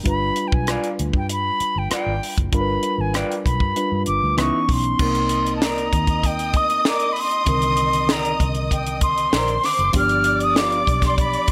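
A light studio reverb gives this brief cut from a longer piece of lush 1970s-style soul a polished, smooth and bittersweet air. An airy silver concert flute sits up front with vibrato and a soft attack, carrying the melody high above a reedy, clean electric piano that plays through its built-in speakers. Underneath, a vintage fingered electric bass sounds dark, round and foam-muted, while a tight funk drum kit, dry and close, pairs a high-tuned snare and tight kick with bright cymbals, hi-hat and rim clicks. An electric guitar through a small old amp adds a twangy, slightly broken-up picked riff from 0.7 seconds, sitting low in the blend. At 5.0 seconds a bowed studio string section enters as a second line, its expressive vibrato and portamento lending a lush, silky top as the harmony moves from Cm9 back toward G7.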